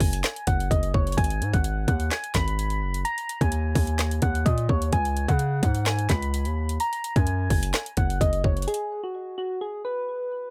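A dry, close-up mix frames this melancholic, brooding trap piece at 128 BPM in a half-time feel, cycling through F#sus2, G#m, D#5 and C#5 before landing back on F#sus2. Mellow, round electric-piano-like synth keys carry the melody through chorus, phaser and a low-pass filter sweep, over a saturated, aggressive 808-style bass with a noisy edge and an up-front trap kit of hard-clipped kick, woody snare, metallic hats and handclaps. The bass stops at 8.7 seconds and the drums at 8.8 seconds, leaving the keys alone until the excerpt cuts off at 10.5 seconds.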